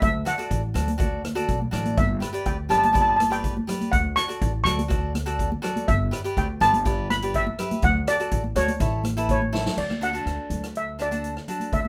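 Calypso in a sunny, festive mood, this excerpt puts a shimmering lead steel pan up front over crisp picked cavaquinho, a woody, thumpy pizzicato upright bass, a natural-sounding street-band drum kit with a boomy kick, and dry, high-tuned congas, all moving through D, G6 and Dmaj7 in a moderate studio reverb until a drum fill at 9.2 seconds leads into a new section at 9.8 seconds.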